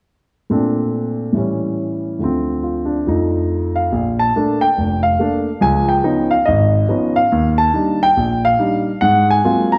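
A relaxed swing at 141 BPM in 4/4 carries this short solo jazz passage in Bb major, cut from a longer piece. A warm, natural grand piano sits up front and plays alone from 0.5 to 9.8 seconds, spanning F1 to Bb5 as it moves from Bbmaj9 through A7, Dm7 and F7, then shifts at 3.9 seconds into a second phrase of Bbmaj7, Db9, Ebmaj7 and Ab13. A moderate recital-hall reverb gives the instrument an unhurried sense of space.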